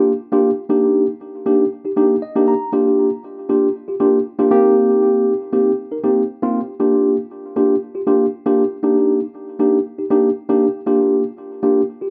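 A rough home-demo mix with a wet studio ambience frames a clean, up-front tine electric piano heard through its built-in speakers, its delay adding a trail. This bittersweet yet energetic pop passage in G minor moves at 118 BPM in a straight 4/4, the piano playing solo from Bb3 to Bb5 across chords of Gm7, Ebmaj7 and Cm7. A short fill arrives from 2.0 to 2.7 seconds, before the 12.1-second cut from a longer piece ends.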